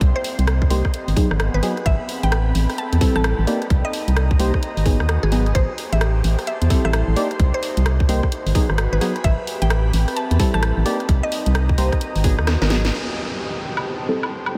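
A dreamy, reverb-soaked mix opens this short cut from a longer two-step UK garage track, skippy and moody at 130 BPM with a 63% swing on the sixteenths. An up-front, hollow FM bass with an organ-like, dark bite pumps against the tight, tape-warm electronic kick. A layered garage kit adds hi-hat, rim click, woodblock and a cracking snare. Behind them, an ethereal detuned pad holds sustained chords while a soft, breathy pad adds a sustained airy texture, both pumping with the sidechain. A deep, mellow chord stab with chorus and tape echo carries a filter sweep, while a woody, round mallet-like pluck sits in the background. The harmony cycles through Cm7, G#m7 and Am7, and a drum fill at 12.5 seconds leads into a closing stretch where an electronic downlifter enters at 12.9 seconds over the lingering pads and stabs.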